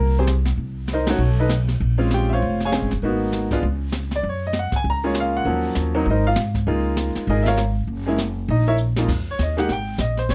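Late-night and smoky, this brisk jazz piano trio swings at 198 BPM in F minor, with a smooth, vintage concert grand carrying the melody over thumpy, woody pizzicato upright bass with gut strings, both up front. The brushed kit sits further back, with dark cymbals, a high-tuned snare and a boomy kick; it joins at 0.3 seconds, hits a band accent at 1.0 seconds with the others, and plays a short fill before the piano takes a solo at 9.1 seconds over an Fm11 chord. The production is dark and dry, with little reverb, and this is an excerpt cut from a longer piece.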